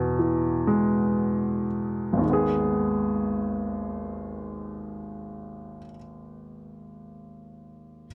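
Close, dry 1970s-style studio sound with moderate booth ambience frames this short, dramatic and aching pop fragment in G# minor, where a clear, polished, up-front baby grand piano plays accompaniment from G#1 to G#4 in a slow 6/8 of about 36-42 BPM in dotted quarters, slowing down over the first 2.2 seconds on an E chord before settling onto G#m and sounding until 8.1 seconds, tuned to A4 = 441 Hz.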